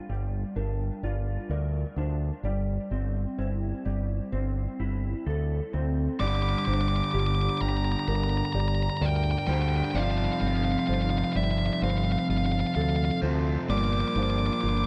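A slow, straight 64 BPM pulse in 4/4 underpins this brooding, cinematic rock excerpt in G dorian, where a lo-fi, slightly broken-up electric guitar through a small old amp arpeggiates with analog chorus and tape echo, joined by a felt-muted upright piano whose soft arpeggios sit in the background with audible action noise. A growling, up-front fingered bass with overdrive anchors the low end over chords moving from Bb/G to Am/G. At 6.2 seconds a scooped, overdriven rhythm guitar riff enters alongside a nasal lead guitar with a parked wah carrying the melody high above, all wrapped in dark digital ambience.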